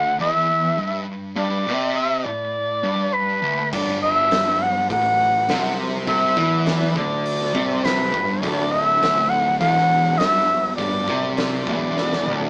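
An airy, reedy shakuhachi carries the melody with vibrato and a breathy chiff, up front over a double-tracked, compressed fuzz guitar riff in this hypnotic, brooding stoner and doom metal excerpt from a longer piece. At 3.7 seconds a growly overdriven bass settles into the background, and an oversized, low-tuned drum kit enters with a boomy kick, fat snare and dark cymbals in a gritty, pumping stone room, closing on a drum fill at 12.0 seconds. The band sounds as if playing live in one room, with light reverb and a small speaker sound.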